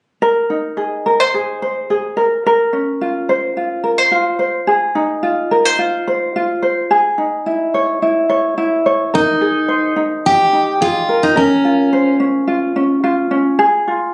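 Easy-going and heartfelt, this acoustic pop excerpt moves at a relaxed 108 BPM in a straight 4/4 feel, set in Ab major. A light, thumb-plucked ukulele carries the accompaniment throughout, sitting up front with a warm tone as the chords move through Abadd9, Bbmadd9, Fm7 and Dbmadd9. At 9.1 seconds a picked steel-string acoustic guitar enters with the melody, its jumbo body giving a full, warm voice, with a touch of finger squeak that adds an intimate, human detail. The guitar line drops out at 12.2 seconds, leaving the ukulele to close on an Fm chord. The sound has the character of a phone recording in the room, softened by moderate studio reverb and held together with compression.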